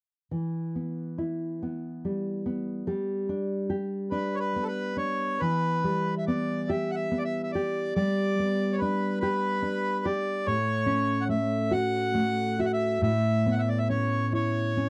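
A full-bodied, thumb-plucked nylon-string guitar opens at 0.3 s, laying down a deep classical accompaniment in a free, rubato 6/8 that gives this Celtic slow air a haunting, longing mood. At 4.1 s a reedy, smooth accordion enters up front with the melody, its dark tone sitting close beside the guitar as the chords move from Em and G toward F#m/A and an unresolved Aadd9. The dry, intimate 1970s-style studio sound keeps both instruments near and bare in this brief excerpt from a longer piece.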